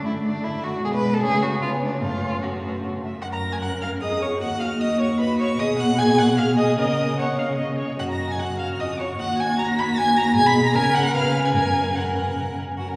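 Classical-period string quartet movement in quick 3/4 at 151 BPM, lively and graceful, opening in F# minor before brightening to F# major at 3.2 s. A rich first violin carries the melody with smooth, even vibrato over an up-front second violin that adds a second line with expressive portamento, while the viola supplies a warm, sliding accompaniment and the up-front cello grounds the bass with a dark, soft-attacked tone. The quartet sits in a wet cathedral reverb with a long tail, and this cut from a longer piece passes through chords such as F#maj13 and C#7 before landing on F#.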